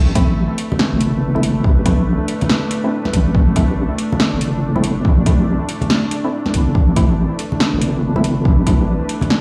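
A half-time groove at 141 BPM in 4/4 drives this dark, cavernous stretch of deep dubstep in A minor, its sixteenths swung at 62%. An overdriven electronic kick lands heavy and layered, while an overdriven kit up front adds a punchy snare and metallic hi-hats, and close, dry congas join at 0.7 s with a bright acoustic snap trailed by dub echo. Underneath, a square-and-sine wobble bass holds between G1 and A1, deep, compressed and coated in chorus. A detuned sawtooth pad with a sub octave sustains moody Am chords, swelling in slowly and lingering mellow in its own reverb. A hollow, organ-like stab cuts in with quick, decaying hits, its noise-flecked tone smeared by analog chorus and dub echo, and the mix sounds as if played on a big system in a bare stone room, cut from a longer piece.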